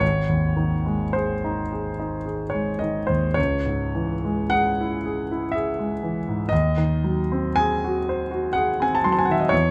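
In a slow, rubato triple metre, this mournful, wistful romantic nocturne for solo concert grand piano drifts through a brief fragment cut from a longer piece, running from 0.0 to 9.7 s. The piano sounds intimate and up front, with deep bass and audible action noise caught by close, detailed microphones. A light reverb gives it a natural air.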